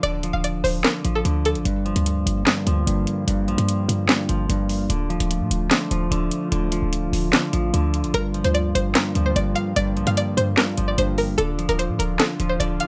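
A sharp, metallic trap drum kit of snare, hi-hats and handclaps sits up front in this dark, eerie half-time hip hop piece. Alongside it play a punchy, tight 808-style bass with a sine core, a fast attack and a decaying tail, and a clean, compressed semi-hollow electric guitar that carries the accompaniment through spring reverb and a low-pass filter. A bright, twangy resonator pluck with chorus voices the melody at the start and again from 8.1 seconds, while from 1.7 seconds a warbling, nostalgic lo-fi pad sustains detuned chords in the background over a shifting Dm and Gm7 progression, set within a light reverb.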